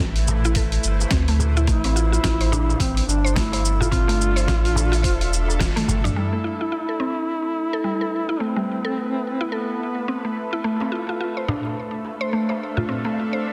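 An earthy, mystical stretch of organic downtempo opens on a tense, string-like bowed drone holding sustained chords, breathing with sidechain pumping under its own built-in reverb, while a deep, round sub bass sits up front and a gritty, overdriven sampler-style soul kit brings hi-hat, shaker, snare and toms in a swung groove. A distant metal-shell darbuka played with soft hands and a thumpy, overdriven electronic kick sit in the background, and a woody, detuned mallet-like synth pluck spins arpeggios through chorus and delay. At 1.7 seconds a mellow duduk takes the solo melody up front, its folk-style vibrato trailing tape echo as the harmony moves between Am7 and Dm7. A drum fill and band accent close the first half, after which the bass and kit drop out at about 6.1 seconds, leaving the drone, the duduk and the pluck, now moving through a filter sweep. The darbuka returns near the end over a Dm7/A chord, all set in a lush hall and a dense, heavily limited master.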